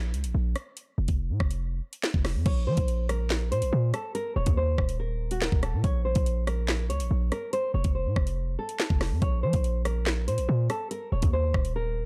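Cold and dark, this short drill cut from a longer hip hop piece moves with a half-time feel and a dark, warm digital ambience. It opens with a brief break over the first 2.5 seconds, where a hard-hitting 808-style bass and an electronic drill kit set the ground. The 808 is punchy and heavy, a sine tone with a noise layer, fast attack and a decaying tail, sitting up front. The drums, also up front, bring a knocking kick, a sharp snare, metallic hi-hats, handclaps, rim clicks and crash cymbal. At 2.5 seconds a fingerpicked nylon-string guitar enters with a classical melody, its tone darkened by a low-pass filter and marked by audible finger squeak, while the chords move through Bbsus2, Eb5, Bbmadd9 and F.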